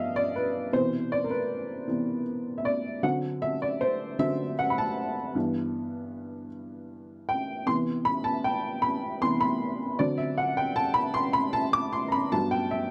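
A slow, straight 6/8 pulse carries this short gospel passage, taken from a longer piece, with an uplifting yet reverent mood throughout its 12.9 seconds. A lone upright piano plays from start to finish, sitting up front with a dark, woody, slightly detuned tone, short sustain and audible action noise. It moves through seventh and sixth chords before settling on a major seventh at 12.3 seconds. The dry, close 1970s-style studio sound adds an intimate feel.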